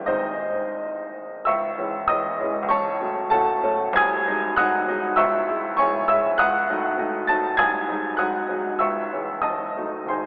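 A clear baby grand piano sounds up front yet filtered through a narrow telephone-like band, its short-sustained notes bathed in the long, wet wash of a cathedral reverb. This stormy, brooding romantic character piece for solo piano, cut from a longer work, moves in a rubato 2/4 across a range from F#1 to A6. After a brief opening passage, a new section begins at 1.5 seconds, and the harmony darkens through minor, half-diminished and diminished colours before the fragment ends at 10.3 seconds.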